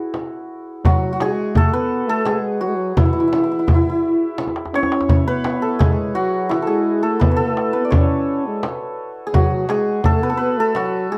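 Shimmering, ringing hammered santur carries the melody up front in this stately, festive Persian modal ensemble piece at 85 BPM in 3/4, with tight, close tombak and a small, bright frame drum struck with hard hands in a live room, a drum fill from 4.4 to 5.1 seconds, and a classical-style French horn with light vibrato entering at 0.8 seconds on a warm, present second line, all captured with light reverb and close, detailed microphones in a passage cut from a longer piece.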